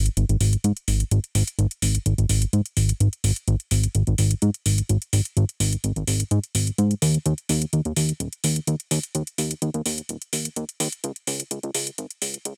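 A digital ambience thinned by a high-pass filter hangs behind two up-front parts. This short progressive house cut, taken from a longer piece, sits in a straight four-four feel with an expansive, emotional mood. A fat analog bass runs from the opening through 12.5 seconds, its thick, saturated, detuned sawtooth and square-wave tone shaped by a filter pluck with a fast attack that gives way to sustained notes between D#1 and G#2. An electronic hi-hat enters at 0.1 seconds, layered and metallic with a tape-warm character, its high-passed hats kept forward. The whole passage works as a build-up, with a filter sweep running across its full length and lending the music a sense of mounting anticipation.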